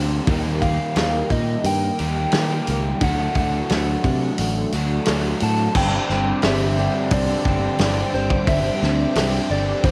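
A gritty, saturated indie drum kit and a growly, up-front fingered bass carry this blissful, hazy shoegaze and dream pop excerpt at 88 BPM, with a round, gentle FM synth lead singing from 0.6 seconds over layered riffs from crunchy double-tracked, hollow-body overdriven and faint twangy guitars, a shimmering, woody twelve-string picking quiet arpeggios, and a swirling, warbling string machine swelling in at 6.3 seconds as the chords move from Eb and D to Gsus4 in a dry, cassette-recorded home sound.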